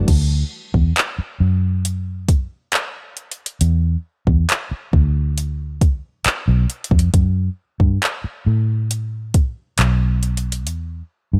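A dark, sensual sound sits in a digital ambience, with both parts placed up front. This is a short cut of moody, sensual contemporary R&B at a slow 68 BPM in a straight 4/4. A vintage muted fingered electric bass carries the low end from the start, its round, foam-muted tone amped and shadowy, moving between B1 and A2. A smooth, electronic R&B drum kit joins at 0.1 seconds with a soft kick, metallic hi-hats, handclaps and crash cymbal, its produced character given a tape-warm glow. The drums stop at 10.9 seconds during a brief break, leaving the bass to sound alone until 11.4 seconds.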